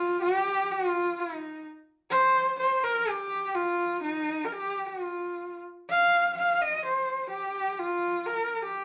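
A bright, husky horsehead fiddle plays alone, bowed with vibrato and portamento in a focused, up-front voice, giving this short cut from a longer Mongolian traditional piece a galloping, proud feel in straight 4/4, set in a wet studio reverb across its 8.8 seconds.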